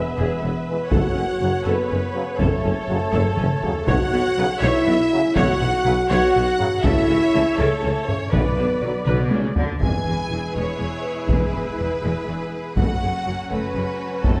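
Distant, bowed violins in two lines, a close and expressive viola section, and a dark French horn section open this cut from a longer cinematic score, an epic and brooding piece in B dorian moving at 81 BPM in a straight 6/8. Beneath them, cellos, lush double basses and a very quiet, smooth-topped tuba carry the bass, while a tight trombone section adds sustained chords from 0.7 seconds. A distant taiko ensemble struck with hard sticks enters at 0.9 seconds and drives the piece as the loudest part, with drum fills marking the phrases. Harmony moves through E, F#m, Bsus2 and A/C# before landing on Bm, where articulate timpani on hard mallets briefly sound at 8.3 seconds. The tuba drops away at 9.4 seconds and the trombones at 9.7 seconds as the opening material returns over E and F#m, with violins singing with intense vibrato above the violas' soft-attacked, rich texture. A wet scoring-stage reverb wraps the ensemble in its space.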